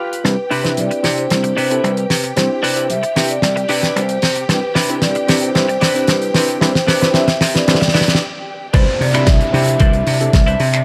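Nu-disco at 113 BPM in 4/4 with a straight feel, this feel-good, groovy excerpt in C major sits on a Cmaj9 chord. A barky, lightly overdriven reed electric piano with fast tremolo, slapback echo and sidechain pumping carries the accompaniment. A clean, twangy twelve-string electric guitar plays a riff with subtle chorus. A vibraphone with soft mallets and the motor off sings a mellow, ringing melody through tape echo, while bowed studio strings hold expressive chords with vibrato and portamento in the background. A dry, up-front 70s drum kit with a fat snare, hi-hat, finger snaps and crash cymbal drives a build-up from 0.2 seconds, where a drum fill runs and filter sweeps move across the electric piano and vibraphone, alongside a punchy, foam-muted thumbed slap bass. After a short break at 8.2 seconds, the drop lands at 8.7 seconds with an overdriven, knocking electronic kick up front and a downlifter, all set in light reverb.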